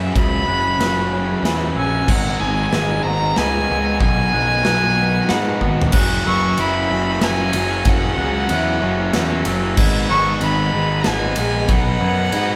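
A band playing live in one large studio room, with a moderate reverb, carries this cathartic, melancholic post-rock passage in 3/4, cut from a longer piece and building up until a drum fill at 5.6 seconds opens the next section. An earthy violin with light vibrato sings the melody over a round, fuzz-drenched picked bass up front, a bright overdriven guitar riff, and a lo-fi, slightly broken-up guitar playing arpeggios in the background. A big acoustic drum kit with a punchy kick and bright cymbals drives the music, while a mellow, bell-like glockenspiel, struck with rubber mallets, adds soft arpeggios from 0.5 seconds.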